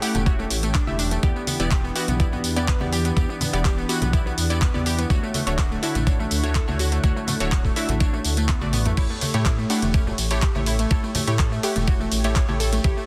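A dense, heavily limited modern master with little reverb gives this hopeful, euphoric progressive house passage a close, pressing sound, cut from a longer piece. An overdriven electronic kick sits up front with a knocking, layered punch, joined by a produced pop drum kit of crash, ride, hi-hat, handclaps, tambourine and toms, which also carries overdrive and plays a short fill at 8.6 seconds. Underneath, a dark detuned saw bass rumbles and beats with saturated depth, pumping against the kick, while bright congas and bongos played with soft hands sit in the background. A glassy wavetable pluck spins crystalline arpeggios with a warbling vintage tape character, chorus and dub echo, and a punchy, wave-folded unison pluck adds stabs that also trail into dub echo. Behind them a thick, full-bodied unison pad holds slow-attack chords with chorus and sidechain pumping, following a progression that moves from A7 through Em7 and Dmaj7 before returning to A7 at 9.0 seconds.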